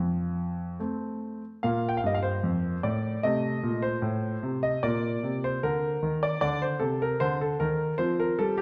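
A rubato 4/4 pulse at 76 BPM carries this graceful, playful fragment of a classical-period piano sonatina in Bb major, tuned to A4 = 439 Hz, where a solo concert grand sits up front with a clear, natural tone and deep bass across a range from F2 to G5, moving through F, Bb5, Adim and Bb before returning to F, with a new section opening at 1.6 seconds, set in a moderate recital hall reverb of 1.6 seconds and a dark production.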